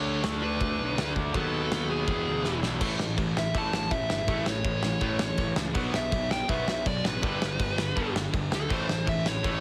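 A straight 4/4 punk rock beat at 163 BPM drives this upbeat, energetic piece in A mixolydian, starting in half time before a drum fill at 2.4 seconds launches an overdriven lead guitar solo from 2.8 seconds, its dark, smooth tone carrying the melody. Up front, a loose acoustic drum kit brings a fat snare, punchy kick and rolled-off top in a pumping studio room. Behind it, two bright, picked overdriven rhythm guitars play the riff with a very quiet, double-tracked fuzz guitar, while a growly, amped fuzz bass holds the low end, and the whole mix has a dry, heavily compressed radio sound.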